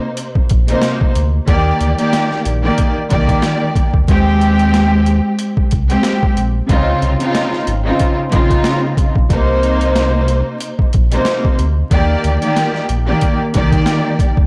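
Swung sixteenths in 4/4 carry this reflective, dark boom-bap hip-hop excerpt, where a lush, woody bowed string section with vibrato and cassette-tape coloring opens at 0.0 s over seventh and ninth chords, a gritty, pitched-down sampler kit with a thumpy kick, high-tuned snare and hi-hat enters at 0.2 s with overdrive, and a deep sine sub bass with transformer saturation joins at 0.4 s, the whole mix sounding blown-out and overdriven with vinyl crackle and light reverb.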